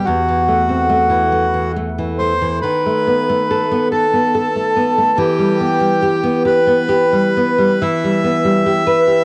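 Melancholic and solemn, this brief cut from a longer romantic duo in E minor drifts in rubato 6/8 at 47 BPM (dotted quarters), with a reedy, dark, airy bandoneon carrying the melody between F#4 and E5 over a warm, fingerpicked classical nylon-string guitar accompaniment, both up front and colored by cassette tape, as the harmony moves from F#m7b5/E through B7/D# to Em inside a wet spring reverb and a homespun tape sound that rolls off above 10.9 kHz.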